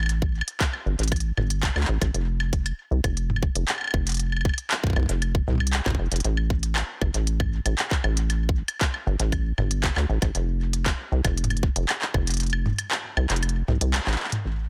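A dense, heavily limited modern master with a digital ambience frames this cerebral, intricate IDM excerpt at 117 BPM in straight 4/4, cut from a longer piece and tuned to A4 = 438 Hz. A rubbery, saturated acid bass with a resonant square-wave filter pluck sits up front in its dark low register, beside a crisp organic electronic drum kit of handclaps, hi-hat, toms and woodblock touched with delay. A tight, tape-warm electronic kick drives the groove until 12.2 seconds, and a band accent lands at 13.9 seconds.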